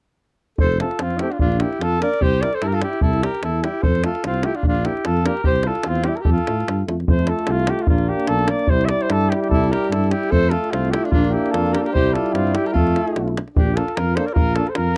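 Festive and wild, this short Balkan brass band passage in F major moves at a brisk 148 BPM in 2/4, with a swung sixteenth-note feel and a tuning set slightly below standard pitch. A warm flugelhorn carries the melody up front, sounding distant and roomy, while a clear alto saxophone with light vibrato plays a second line that drops out around 6.9 seconds and returns at 9.5 seconds. Underneath, a dark, close-miked tuba anchors the bass, and a tight, acoustic davul drives the percussion with a close, dry punch. Tucked in the background, a euphonium with a vintage edge and a trombone with a distant, roomy tone supply the accompaniment. The harmony cycles through F, Bb and C over two repeated sections before a new section begins at 13.6 seconds, and the whole is captured as a dry, close studio recording in a 1970s style, cut from a longer piece.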